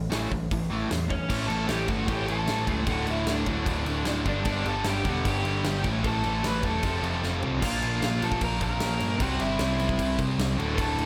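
Two picked guitars, one bright and compressed, the other overdriven and sitting in the background, open this energetic, upbeat punk rock cut together with a growly, punchy bass, as a big, natural-sounding, up-front drum kit with bright cymbals and a punchy kick arrives almost at once. A lead guitar through a small cranked amp carries the melody from 1.1 seconds, and a very quiet, double-tracked fuzz guitar joins the riffing just after. A drum fill at 7.2 seconds leads into the final section, where the chords move from Bb to C, all under a light reverb.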